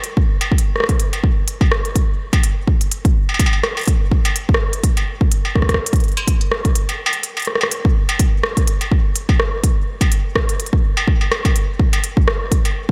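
Dry and up front, this cerebral, intricate IDM excerpt sets a crisp-hatted industrial kit of hi-hat, rim click and struck metal, tinged with digital delay, against a heavy, tape-warm electronic kick in a lightly swung 4/4, the kick dropping out from 6.8 to 7.7 seconds.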